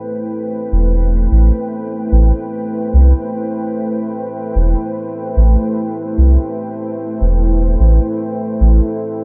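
A close, dry sound frames this short cut from a longer ambient dub piece in A minor, moving at a meditative 74 BPM with a light 16th-note swing. A dark, warbling pad of detuned sawtooth voices with a sine sub octave holds a slow-blooming Am7 chord throughout, thickened by chorus and its own reverb. At 0.7 seconds, a round, soft sub bass with tube saturation enters low and up front, sustaining beneath the pad until 8.8 seconds.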